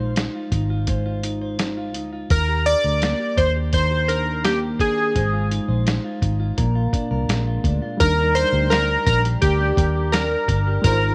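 A dry, close-sounding snippet of laid-back, nostalgic indie and bedroom pop at 84 BPM in Eb major, where muffled, pitched-down sampler-style drums and a dark, foam-muted, punchy fingered bass sit up front beneath a clean, picked electric guitar bathed in lush chorus and vibrato; a bright, detuned analog keys melody with ring modulation, a filter sweep and tape echo enters at 2.3 seconds, and a reedy, worn, slightly out-of-tune electric piano with fast tremolo joins in the background at 8.0 seconds as the chords move through Ab6, Ebmaj7 and Bb7.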